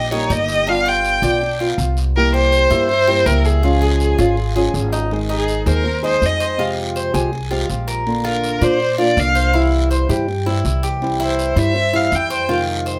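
A sultry Latin excerpt in the Cuban son and guajira style opens with a bowed violin singing with vibrato and portamento over a metallic, double-strung tres picking arpeggios and a woody, thumpy pizzicato upright bass, joined almost at once by a small, fingerpicked nylon-string guitar and a raspy, dry guiro, before the plate-reverbed violin takes an expressive solo from 5.1 seconds.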